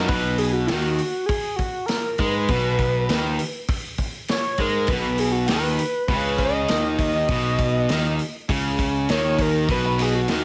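Upbeat and carefree, this short indie rock cut from a longer piece moves in a straight, steady four. A gritty, screaming synth lead carries the melody throughout, its sawtooth and square-wave tone distorted and guitar-like, with vibrato, a fast attack and sustained notes, thickened by slapback echo and plate reverb. Beneath it, a bright, hollow-bodied semi-hollow guitar drives an overdriven riff up front, while a fuzzy, round electric bass grinds out the low end with added overdrive. A vintage acoustic drum kit enters at 0.1 seconds with a punchy kick, a medium-tuned snare and hi-hat, its sound mid-forward and rolled off on top in a studio room. A compressed, overdriven electric guitar with analog chorus sits in the background, sounding only briefly at the start and again from 9.8 to 10.3 seconds, and a light reverb wraps the mix.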